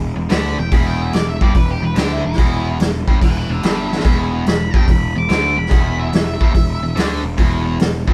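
Gritty and raunchy, this short cut of swung blues rock and southern rock opens with a biting, double-tracked overdriven guitar riff over a growly, fuzz-laden picked bass. From 0.3 seconds, a dark octave-fuzz lead guitar carries the melody, and a raw garage drum kit sits up front with a saturated sound, a boomy kick, a medium-tuned snare and a rolled-off top, adding a fill at 3.8 seconds. The band sounds as if playing live together in one room, with moderate studio reverb.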